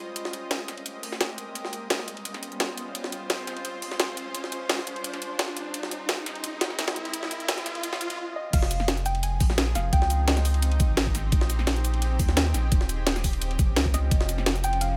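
This liquid drum and bass excerpt rolls along in a straight 4/4, with two layered drum kits running from the start: an overdriven kit up front with a cracking snare, bright hats, crash and shaker, alongside a gritty, pitched-up sampler-style jungle kit with a high-tuned snare and ride. A shimmering, ethereal pad carries sustained chords throughout, its warbling, vintage tone pumping under sidechain, while an electronic riser builds across the first 8.2 seconds before a brief stop. At 8.5 seconds the drop lands with a knocking, overdriven kick and a deep, round sub bass that sits up front with tube saturation. A soft, dark pluck adds a gentle melody in the upper register with subtle chorus and tape echo, returning near the close. The harmony cycles through lush extended chords such as Bb13sus4, Eb13, Fm7 and Dbmaj9#11, giving the piece a melancholic, rolling mood.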